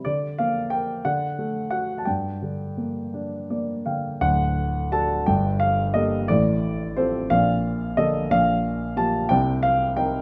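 A rubato 6/8 lilt at 55-61 BPM carries this melancholic classical passage in G minor, cut from a longer piece, where a dark, mellow solo baby grand piano sits up front with short sustain in a moderate scoring-stage reverb, adding a brief fill from 3.1 to 4.2 seconds before moving through D, Gmadd9, F/A, Bbmaj7 and Gm7/Bb toward a closing Cm7 at 9.3 seconds.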